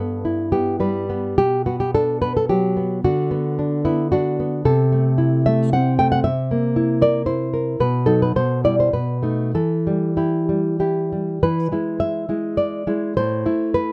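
A lone nylon-string guitar opens this short romantic fragment in triple metre, its dark, full-bodied, thumb-plucked tone sitting up front and close, with fine detail and barely any reverb. The rubato playing feels wistful and passionate, drifting through shadowy minor harmonies before settling home around 9.5 seconds. At 11.4 seconds an E7 chord opens a new passage that reaches A minor just before the fragment breaks off.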